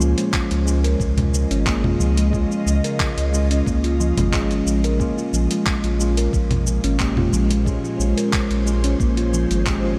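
A round, deep analog bass sits up front with sidechain pumping in this meditative, earthy organic downtempo piece in Bb minor at 90 BPM, cut from a longer work, moving from Dbmaj9 to Bbm9 at 5.0 seconds. A bright steel tongue drum struck with firm rubber mallets plays ringing arpeggios through analog delay. A worn, slightly out-of-tune tine electric piano accompanies in the background with delay and pumping, while an ethereal, detuned pad holds sustained chords through chorus, phaser and pumping. A gritty, tape-warm sampler-style kit of congas, handclaps, hi-hat and shaker is joined at 0.3 seconds by a thumpy electronic kick, and a huge ambient reverb leaves the whole mix dreamy and soaked.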